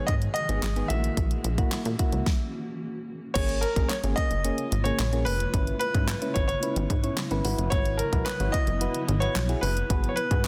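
A dense, heavily limited modern mix with light digital ambience frames this confident, bittersweet dance-pop excerpt, where a clear, polished concert grand piano carries the melody up front with a touch of delay. Round, warbling electric-piano-like synth keys with chorus and a cloudy, blurred granular pad in the background both pump against the beat, joined at 0.1 s by a punchy, funky, filter-plucked analog bass and a layered electronic pop kit with a fat snare, handclaps, hi-hat and crash. After a brief stop from 2.3 s, the groove returns at 3.4 s into a new section over minor-seventh and suspended chords.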